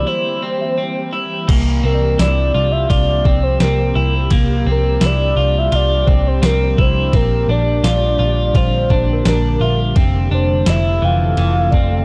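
A soft, octave-layered synth lead carries the melody in this ethereal, floating dream pop excerpt at 85 BPM in C mixolydian, its round, dark tone softened by chorus, vibrato and tape echo over a warbling, detuned airy pad and a slightly broken-up electric guitar picking compressed arpeggios. A foam-muted vintage bass sits up front beneath a very quiet, bell-like celesta that enters at 0.6 seconds, and a detuned 8-bit drum machine with a thumpy kick, snare, tambourine, ride and crash arrives at 1.5 seconds as the harmony moves from C7 through C7sus4 and Bb6 to Fmaj7. The digital ambience frames a dry, gritty hardware sound.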